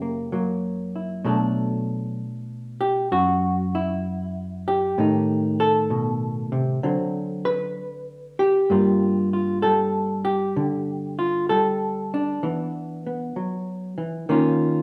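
A dark, clean hollow-body electric jazz guitar plays alone and up front, fingered in a swinging, sophisticated solo jazz setting with swung eighths in 4/4. Its chords move from F#7b9 through Bm7, Adim and D7 to Gm9 at 8.7 seconds, touching E5 before closing on Eb7sus2. A wet, large studio reverb and a faint mains hum frame the sound, which is heard from further back in the room in this fragment cut from a longer piece.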